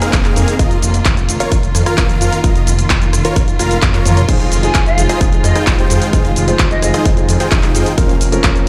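Festival progressive house at 130 BPM in F minor, this anthemic, emotional excerpt pairs a huge, thick supersaw riff and a punchy, up-front kick with a big-room dance kit of crash, handclaps, hi-hat, rim click, shaker and toms, a detuned saw bass with chorus, and distant, lush bowed strings sustaining chords, all pumping to the sidechain except the drums, before a drum fill at 4.1 seconds brings in a grand piano at 4.3 seconds and an airy wooden flute melody with tape echo drifting in the background from 4.6 seconds, the whole mix bathed in large studio reverb.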